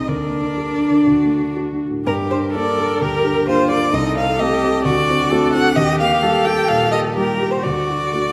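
Restless and dramatic, this brief cut from a quick classical-period piano quartet movement in G minor moves at 120-132 BPM with a rubato feel, as a focused, vibrato-laden violin carries the melody up front over a short-sustained grand piano, while a rich viola with a soft attack and portamento sits in the background and an airy, intimate sul tasto cello adds a second line from 0.1 seconds, all set in a wet concert hall.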